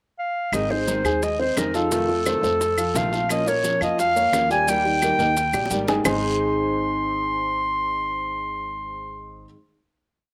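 A clear, close-miked clarinet leads this short, sunny Cuban son and guajira piece at 174 BPM in Ab major, playing a classical-style melody built from call phrases and touched with slapback echo. Beneath it, a fingerpicked nylon-string guitar with finger squeak and muted slaps, also carrying slapback echo, is joined by a dark, worn grand piano playing a montuno in octaves with audible action noise, while a woody, thumpy upright bass plays a pizzicato tumbao that anticipates the chords. Round, low-tuned bongos, claves holding a two-bar time line, a raspy guiro and grainy maracas drive the danceable verse, closing with a fill before dropping out at 6.1 seconds as the band holds the final chord in an outdoor recording with little reverb.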